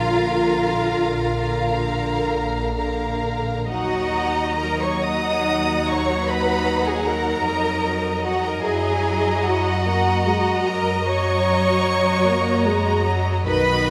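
In a rubato 12/8 lilt at roughly 43-52 BPM, this slow romantic string orchestra movement unfolds with a yearning, elegiac mood, moving from Bb through Ebm to Gb7. A focused, close violin section carries the melody above a lush, distant second violin line, while smooth, even violas supply the accompaniment. Rich cellos and a smooth double bass section share the bass, all bowed with vibrato and bathed in a wet scoring-stage reverb.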